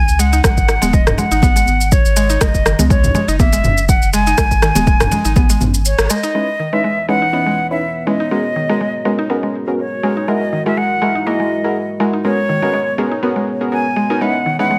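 Afro house at 122 BPM in G# minor, driving and hypnotic, with an airy, up-front concert flute carrying the melody throughout with vibrato and tape echo, over a woody, mallet-like synth pluck arpeggio with chorus and cassette-tape colour, an overdriven deep house kit of hi-hat, rim click, shaker and filtered toms, and a round analog bass that pumps to the sidechain until 6.1 seconds. An overdriven electronic kick and damped, high-tuned congas in the background drive the opening until a short break and band accent at 6.0 seconds. Then the harmony turns to C#m9, G#m11 and F#9 as mellow, evolving chord stabs with tape echo and a moody, detuned analog pad with a slow attack fill out this cut from a longer piece.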